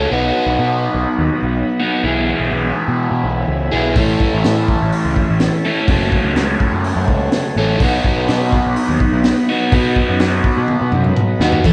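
A crunchy, double-tracked overdriven guitar with phaser leads this hypnotic, kaleidoscopic psychedelic rock excerpt, riding over a fuzzy picked electric bass and a buzzy vintage combo organ holding sustained chords in the background through B, E/B, Aadd9 and F#madd9, while a gritty, dark-cymballed breakbeat drum kit with a punchy kick and high-tuned snare enters at 4.0 seconds and plays a fill from 10.7 seconds, before a shimmering tanpura drone sounds briefly at 11.6 seconds, all played live in one room with light reverb.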